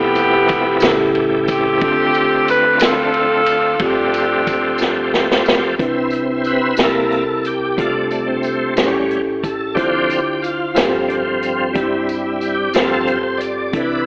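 In a straight 6/8 lilt at 60 dotted-quarter beats per minute, this slow gospel cut in C major feels jubilant and soulful, taken from a longer piece. A clear, up-front saxophone section states the melody with tape echo for the first 5.2 seconds, over a bell-like tine electric piano and a full tonewheel organ holding sustained chords through a fast rotary speaker with overdrive, chorus vibrato and audible key click. A swinging big-band drum kit with a punchy kick, medium-tuned snare, hi-hat and ride cymbal carries the groove, while a jingly tambourine sits close and dry in the background. After a drum fill from 4.8 seconds, the organ takes a shouting solo at 5.8 seconds, riding lush changes such as Cmaj9, C7, F69/C and Dm9 before settling on G9sus4. The whole mix wears an AM radio tint inside a moderate hall reverb.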